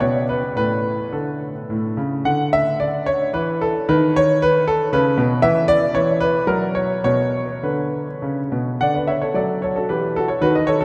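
Drenched in the long, wet reverb of a vast cathedral, a clear concert grand piano sits up front with a natural tone and deep bass, its notes ringing out into the echoing space. This short cut from a baroque-style suite movement moves in a flowing, dance-like 3/4 at roughly 99-119 BPM, played solo with a supple rubato across a range from A2 to F#5. The harmony drifts from an Asus4 and A through a lush Dmaj13 and B/D#, settling into B minor from 5.4 seconds before turning to D at 8.8 seconds.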